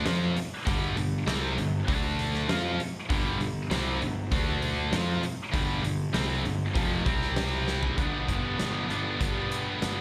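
Classic rock in G mixolydian at 98 BPM, this sunny, driving clip from a live club gig heard through the venue's PA sets a tight, bright, double-tracked distorted guitar riff with slapback echo up front over a dark, round fuzz bass and a huge arena drum kit with a fat snare and punchy kick, cycling G5 and D5 power chords and moving to C5 before a drum fill at 7.7 seconds lands the new section on G at 8.0 seconds.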